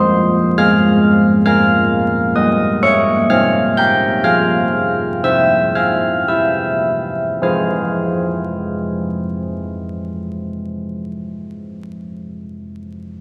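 Classical music for church bells, this solemn, wintry passage is cut from a longer piece and moves at a slow 52-68 BPM in 4/4 with a straight feel, in F minor. A solo carillon carries everything from 0.0 to 11.1 seconds, spanning F3 to G6 with a bronze, mellow tone, a padded clapper and a distinct minor-third overtone that sits up front in the sound. The opening phrase slows down through its first 7.4 seconds, moving from F minor through a diminished chord over B-flat, an open fifth on F over C and a C major chord before settling back on F minor as a second phrase begins. A deep church reverb with a long 3.2-second decay surrounds the bells, giving an airy, resonant space. Vinyl crackle lends the recording an old, worn patina.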